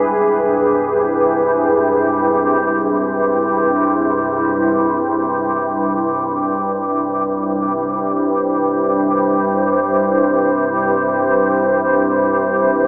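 Floating in free time with an unmeasured pulse, this dark ambient drone in C major feels dark and cavernous, and it is cut from a longer piece. An organ-like drone sits up front in the low register, a calm, sine-based unison tone with a slow attack and long release, thickened by ensemble chorus and its own reverb. Above it, a deep, moody pad holds sustained chords, its detuned sawtooth and sine layers with a sub octave giving a full-bodied, shadowy weight, softened by chorus and reverb. The harmony rests on E before settling onto C at 5.0 seconds, and both parts sustain through the full 12.9 seconds. Everything sits inside a huge, wet reverb with a 7.6-second decay, while a narrow telephone-like filtering gives the sound a distant, boxed-in character.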